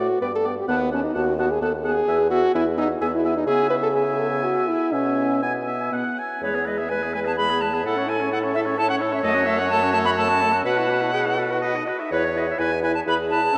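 Heard in a vast, echoing cathedral with a long, wet reverb, this fragment of a quick classical-period movement for wind quintet moves in a graceful, cheerful 3/4 at 127 BPM, in E major with a rubato feel. A pure, distant silver flute carries the tongued melody with vibrato, and a warm oboe with light vibrato sings the second line. A clear French horn and a close-miked clarinet fill in the accompaniment over a mellow, smooth-topped bassoon bass, with a new section beginning at 6.4 seconds.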